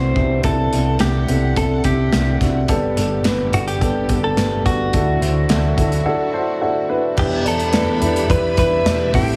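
A straight 4/4 pulse at 107 BPM drives this uplifting, hopeful piano-driven pop excerpt. A dark, woody, slightly detuned upright piano sits up front with plate reverb and plays a fill during a break from 6.1 to 7.2 seconds, while a clean, direct-recorded electric guitar carries the melody with subtle chorus and plate reverb. Lush bowed strings hold chords in the background, a round hollow-body bass anchors the low end, a modern drum kit with a punchy kick pumps in its room, and a bright, jumbo-bodied picked acoustic guitar riff enters at 7.2 seconds as the chords move from Cadd9 through Gadd9 and Dadd9 to Em7, all under a heavily compressed radio sound.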